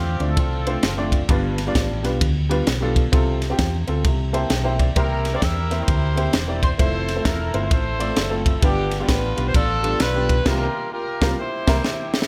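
Hopeful and reverent, this swung uptempo gospel passage is cut from a longer piece and moves through a brief run of chords. A smooth-topped horn section carries the melody with light vibrato and a pop-style ensemble sound, stating a short phrase at the start before returning at 5.0 seconds. Underneath, a woody, slightly detuned upright piano supplies the accompaniment and steps forward with a fill at 4.0 seconds. A dark, round hollow-body electric bass holds the low end. An airy, polished drum kit sits up front with a high-tuned snare, tight kick, ride and crash. The band hits an accent at 10.5 seconds, and the drums close with a fill, all in light reverb.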